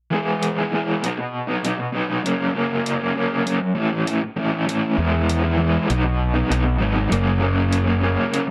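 Indie rock with a jangly, upbeat mood, cut from a longer piece: a raw, dark, overdriven garage guitar sits up front with a picked riff and tremolo over an E, B, F#, A progression, joined at 0.4 seconds by a sampler-style electronic hi-hat with a small-room, tape-warm character. At 5.0 seconds a bright, growly fuzz bass, fingered and overdriven, comes in up front and holds until 8.2 seconds. Digital ambience lends the whole a dark production sheen.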